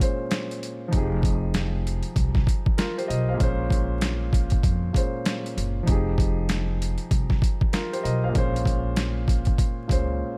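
Boom-bap hip-hop excerpt in F minor at 97 BPM with a swung, reflective and dark feel, where a smooth, vintage-toned grand piano filtered at both ends plays minor ninth chords alternating between Bbm9 and Fm9 over a gritty, pitched-down, overdriven sampler drum kit with a thumpy kick sitting up front, joined at 0.9 seconds by a woody, gut-string pizzicato upright bass, all in a dry room dusted with vinyl crackle.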